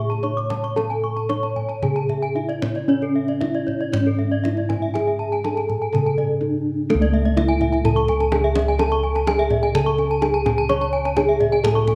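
A mellow bronze metallophone opens this brief cut from a longer Balinese gamelan piece, carrying the melody in a soft, mid-forward voice struck with padded disc mallets. Alongside it from the start, a bright, close-miked metallophone played with a horn mallet spins arpeggios higher up, its dry, full tone paired with a darker, smoother metallophone that joins at 0.1 s on a second arpeggio line. The paired tuning of all three metallophones sets off shimmering beats that give the C# pelog texture its brilliant, shimmering mood. Beneath them, round, up-front bossed gongs carry the bass with a beating, boxy character, while a kendang enters at 0.1 s with tight, band-limited hand strokes of a vintage flavour. The music moves in a straight 4/4 at roughly 113-127 BPM, turns to a new section at 6.9 s, and sits in a moderate recital hall reverb.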